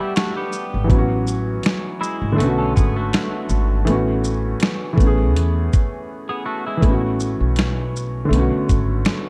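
A dusty, sampler-style drum kit sits up front in this mellow, dreamy lo-fi hip hop excerpt, its thumpy kick, medium-tuned snare, hi-hat, shaker and finger snaps sounding gritty and compressed, as if re-recorded in a large room. The groove moves at 81 BPM in 4/4 with a gentle 16th-note swing, and the harmony in A major drifts through Gmaj7, A6, Bm7 and Amaj7 chords. An upright piano carries the accompaniment from the start, intimate and slightly detuned, with audible action noise and a cassette-tape, low-pass softness that keeps it close to the listener. Beneath it, a woody pizzicato upright bass with steel strings enters at 0.7 seconds. A clean, picked twelve-string electric guitar adds a quieter second line through tape echo and a low-pass filter, dropping out at 7.0 seconds after a short break at 6.1 seconds leads into a new section. Light reverb gives the whole a hazy, lamplit glow.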